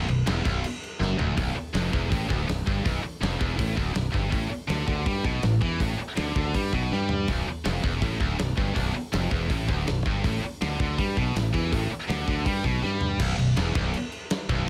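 Heavy metal in B minor, this dark, relentless cut from a longer piece drives forward at 162 BPM in a straight 4/4, and the tuning sits at A4 = 442 Hz. A distorted, high-gain electric guitar plays the riff throughout, picked and double-tracked, with a bright, up-front edge. A fingered electric bass holds down the low end with a growly, punchy tone heard direct. An acoustic rock drum kit with a big-room character, a medium-tuned snare, a tight kick and a rolled-off top sits mid-forward and up front, driving crash, hi-hat, kick, snare and toms, with fills at 1.0, 6.9 and 12.8 seconds. The harmony swings between B minor and A5 before the chords fall away at 13.2 seconds, all in a dry sound with little reverb.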